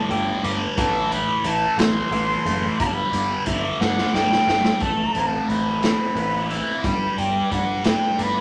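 A hypnotic, dark slice of psychedelic rock opens at once with an airy silver concert flute carrying the melody in a straight tone and a thick fuzz guitar playing a riff, its sound bright, double-tracked and up front, colored by distortion and phaser. A moment later a growling picked electric bass enters, overdriven and heard direct and amped, along with a raw garage drum kit of hi-hat, punchy kick and a medium-tuned snare, gritty and saturated with a rolled-off top. The pulse sits at 60 BPM in a straight 6/8, moving through G5 and Am chords in A dorian before a drum fill from 3.8 to 4.8 seconds leads into a new section built on Amadd9 and then G. The flute, crisp in attack yet somewhat distant, rides above the guitar, while the bass stays low and subdued beneath them. A moderate club reverb gives the whole a compact, room-bound feel, and the passage is cut from a longer piece.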